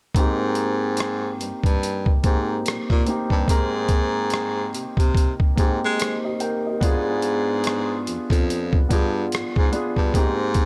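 Soulful and unhurried, this swung neo-soul R&B fragment pairs a gritty, pitched-down boom bap sampler-style kit of thumpy kick, hi-hat and rim click with a bright, jazz-inflected baritone saxophone carrying the bass line in scooped, lightly vibratoed notes, while a concert grand piano with deep lows, long sustain and lush chorus lays down rich chords that move from Abmaj9 to G7b9 at 6.8 seconds, all set in a small, lightly reverberant room.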